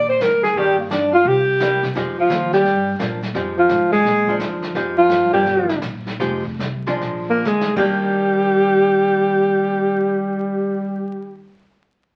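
A breathy, vibrato-laden alto saxophone carries the melody up front in this playful, relaxed excerpt of small-group swing and bop in Eb major, joined by a second, brighter alto whose scooped notes add a second line. Underneath, a dark, clean hollow-body archtop guitar accompanies with a picked part, a woody, growly pizzicato upright bass holds down the low end, and a brushed drum kit with dark cymbals and a boomy kick plays until a fill near 7.5 seconds. The swinging tempo eases back from 4.7 seconds, and the whole performance sits in a club-like reverb with the crackle of a very old 78 rpm record.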